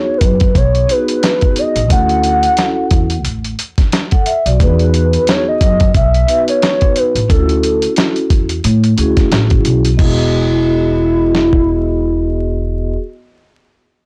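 A warbling, nostalgic synth lead and a mellow soft-mallet vibraphone open this cool, smooth jazz-hop fragment, drifting over jazz chords that alternate between two major-ninth harmonies. The lead blends triangle and sawtooth tones, detuned and sustained with chorus, tremolo and vibrato. The vibraphone rings with a slow motor vibrato and a vintage, band-limited shimmer. At 0.2 seconds, a woody, growly pizzicato upright bass arrives up front with tube saturation, alongside a gritty, compressed sampler-style drum kit with a thumpy kick, medium-tuned snare, hi-hat and crash cymbal under a swung sixteenth-note feel. The drums drop out at 11.7 seconds near the close of a brief second section. The whole recording sounds blown-out and overdriven, with vinyl crackle and light reverb giving it a dusty, lo-fi character.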